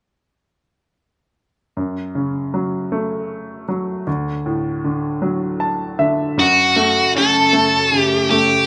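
A clear baby grand piano opens this melancholic pop fragment at 1.8 seconds, laying down an accompaniment in F# minor at a slow 52 BPM in a straight 6/8. Its natural, short-sustained tone sits up front as the harmony moves from F# minor to D, and the piano adds a fill from 5.2 seconds. At 6.4 seconds the music returns to F# minor and a new section begins, bringing in a bright, distorted lead guitar that carries an aching melody in a narrow register, picked with high-gain bite and placed prominently in the mix. Beneath it, a sweeping resonant pad enters in the background with sustained low chords, its evolving sawtooth and triangle textures wave-folded and shaded with chorus and phaser. Light reverb and a rough home-demo mix give the short excerpt an intimate, unpolished feel.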